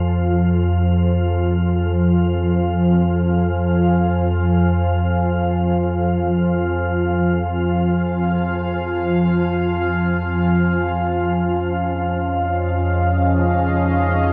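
A cavernous, reverb-drenched wash opens this desolate dark ambient drone in free time, where an up-front, organ-like drone with a wave-folded, chorused edge holds steady beneath a deep, detuned sawtooth pad that fades in across the full 14.3 seconds with moody sustained chords, moving from Fm to Dbadd9/F at 10.1 seconds.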